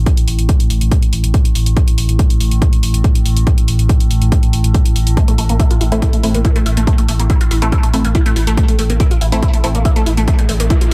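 Driving and industrial, this is a short cut of peak-time techno at 141 BPM in a straight 4/4, set in A phrygian. A heavy, up-front kick and tape-warm hi-hats, both re-recorded in a small room, run almost from the first moment, while a deep, thick saturated sub bass with overdrive and a low-pass filter pumps beneath them. Above it hangs an eerie, nasal FM drone, metallic and inharmonic, coloured by chorus and its own reverb. At 5.2 seconds a juicy, squelchy blip pluck enters with phaser, lush chorus and digital delay, and soon after muted, mellow dub chord stabs arrive through tape echo and phaser, dropping out at 9.7 seconds. A very quiet riser appears at 10.1 seconds, and the sub bass, drone, hi-hats, pluck and stabs all breathe with sidechain pumping inside a digital ambience.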